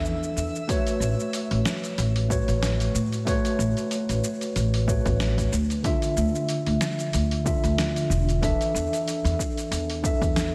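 A relaxed 93 BPM groove in 4/4 with a light 16th-note swing carries this blissful sunset chillout excerpt in A major, as a dusty, gritty sampler-style kit of hi-hat, shaker and fat snare, overdriven and touched with slapback echo, is joined by a punchy, layered electronic kick that enters at 0.7 seconds. Up front, a clean tine electric piano with digital delay and slapback echo voices chords moving from E7sus4 through A69 and Dmadd9, while a woody, growly pizzicato upright bass anchors the low end. A bright, twinkling granular shimmer glints in the background for the opening 0.7 seconds, and a lush hall reverb gives the whole an arena-sized sense of space.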